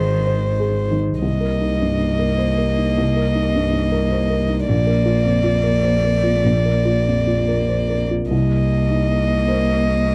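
A dark, intimate single violin with light vibrato and an airy bow carries the melancholic, longing melody up front in this neoclassical piano-and-strings excerpt in C minor, moving in a rubato 3/4 at roughly 93-107 BPM over Ab, Cm7 and Bb chords, while a rich, focused cello sings a second line in the background, a mellow, woody and slightly detuned upright piano accompanies, and a single bowed double bass holds a smooth, even bass line, all captured in a dry, close 1970s-style studio sound.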